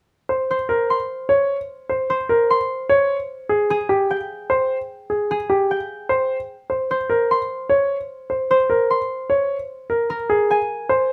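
Classical minimalist pattern music in Bb dorian, this hypnotic, urgent passage runs at 150 BPM in a straight 4/4 and is cut from a longer piece. A bright baby grand piano enters at 0.3 seconds with up-front arpeggios, its worn, intimate tone carrying audible action noise. At 0.5 seconds a fingerpicked concert harp joins with a ringing melody, a little quieter than the piano, while the harmony moves from Bbm through Abmaj7/G and back to Bbm before settling on Abadd9, all captured by close, detailed microphones in light reverb.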